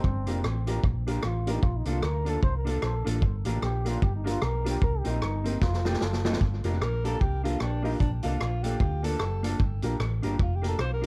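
Ska at 151 BPM in G minor with a swung, driving and energetic feel, cut from a longer piece and set in a dark production with light reverb. A gritty, saturated vintage drum kit and a round, hollow-body fingered electric bass sit up front, while a clean, mellow electric guitar and a woody, slightly detuned upright piano playing stabs, both touched by tape echo, fill in behind. A distant, punchy trombone with vibrato takes the first solo, capped by a drum fill at 5.6 seconds, before a breathy, whispered alto saxophone takes over at 6.8 seconds.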